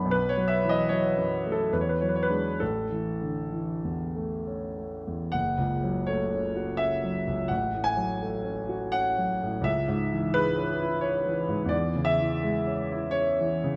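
A solo concert grand piano opens this serene, tender romantic nocturne, its tone clear and open and placed up front, with a deep bass reaching down to F#1. The playing moves in a triple metre with a flexible rubato feel, the phrasing stretching and relaxing at a gentle, unhurried pace. The opening passage drifts through B5, E9 and A chords before a second section begins at 5.3 s, shifting into a darker minor color on F#m, F#m/A, C#m and C#m/E. A wet recital hall reverb surrounds the instrument with a soft halo of space. The recording is a brief cut from a longer piece, ending at 13.8 s.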